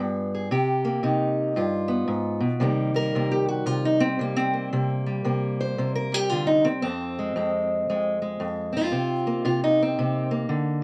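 A booth's moderate ambience frames a dark, boxy parlour-style steel-string acoustic guitar, fingerpicked and placed up front in this short excerpt of acoustic country blues in C minor. At 114 BPM in 4/4 with a swung eighth-note feel, the mournful, brooding solo guitar ranges from F2 to C5, opening with a brief passage before moving at 2.6 seconds into a longer section. That section lingers on minor harmony before reaching a bare dominant chord at 8.9 seconds.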